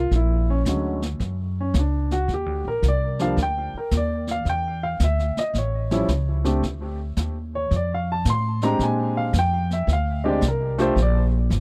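Playful and sophisticated, this short excerpt of a swung jazz piano trio at 111 BPM features an intimate upright piano with audible action noise and a touch of tape echo carrying the melody over thumpy pizzicato upright bass and a brushed kit with a boomy kick, all captured in a dry, close 1970s-style studio sound.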